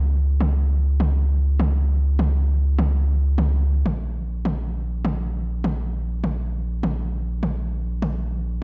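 A straight 4/4 pulse drives this short melodic techno cut, taken from a longer piece and holding to a single section. A round analog bass carries the low end from the start, its deep, sine-like tone sitting up front with a fast attack and sustained, dark notes in the Bb1 to Db2 range. Electronic toms join at 0.4 seconds and run until 8.1 seconds, sitting lower in the mix, with overdrive adding grit while a low-pass filter dulls their edges. The sound carries the feel of a big sound system in a bare room, with a large studio reverb lending space to the lean arrangement. The mood is driving and cinematic, built almost entirely on the weight of the bass and the muffled, analog push of the toms.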